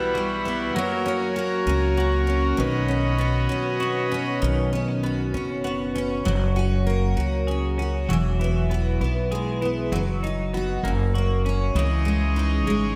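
A gentle six-eight sway carries this tender pop ballad, cut from a longer piece, at an unhurried, rocking pace. A full-bodied, double-tracked steel-string acoustic guitar, picked on fresh strings, sits up front as the main accompaniment, joined close by a woody, thumpy upright bass played pizzicato. A clean, twangy twelve-string electric guitar spins compressed arpeggios through subtle chorus and analog delay. A pipe organ on its trumpet stop adds brassy sustained chords with a baroque voicing and a touch of chiff, dropping out at 4.4 seconds and returning at 11.8. The harmony moves through colored chords such as Emadd9, Badd9 and F#add9 before settling on C#madd9, all bathed in a dreamy, lush hall reverb.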